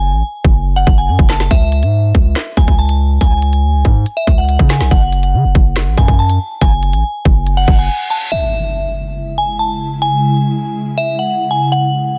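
A half-time drill groove drives this menacing, ominous hip hop fragment, cut from a longer piece, with an electronic drum kit entering at 0.4 seconds: a hard-clipped kick, woody snare, crisp hi-hats and handclaps, all tape-tinged and up front. A punchy, saturated 808-style bass with a noise layer hits hard and decays underneath, dropping out at 7.9 seconds. Over the top, a glassy FM synth bell carries the melody for the whole passage, its crystalline tone treated with chorus and delay. A reverse cymbal rises into an electronic impact at 8.3 seconds, marking the shift into a second section. There an ethereal, airy pad of detuned unison voices with a moving notch holds sustained chords, drifting in slowly with ensemble chorus and reverb beneath the bell, all within a dense, heavily limited modern master.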